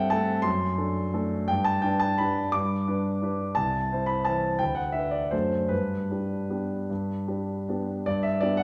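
In a lilting waltz time with elastic rubato, a solo concert grand piano plays a playful, sparkling classical excerpt, its up-front sound rich with deep bass and long sustain ringing into a wet recital hall reverb, moving through a D7/F#, G, Am/C, D69, D7/F#, G progression before it stops at 8.6 seconds.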